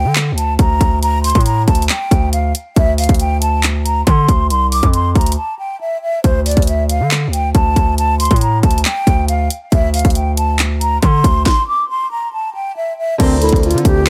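Over a half-time trap beat at 138 BPM in D minor, an overdriven, up-front drum kit of hard-clipped kick, sharp snare, bright hats, handclaps and crash drives under a heavy, saturated 808-style bass with a noisy distorted edge, briefly breaking at 5.4 seconds and stopping outright from 11.5 to 13.2 seconds. A mellow, hollow concert flute with vibrato and a soft attack carries the dark, menacing melody throughout this short cut from a longer piece, recorded nearly dry. In the final second, a thumb-plucked, ringing Celtic harp enters at 13.2 seconds, joined by a round, chorused octave-layered synth lead in the background and a faint, ethereal detuned pad.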